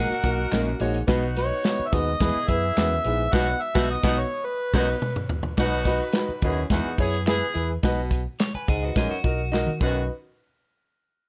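Uptempo 1960s-style soul in B major at 106 BPM, a danceable, joyful excerpt cut from a longer piece, where a gritty, overdriven harmonica with tape echo carries the melody up front for the first 5.3 seconds, with tongue slaps and scooped notes, over a distant, roomy horn section, an open concert grand piano and a dark, foam-muted fingered bass. A clear baritone saxophone with subtone plays a riff from 0.5 seconds, an electric guitar at the edge of break-up adds brief picked riffs, and a punchy, natural country drum kit joins a band accent from 3.3 seconds and plays fills around 4.5 seconds, backed by tube shaker and group handclaps. Chords move through D#m, B and E under light reverb.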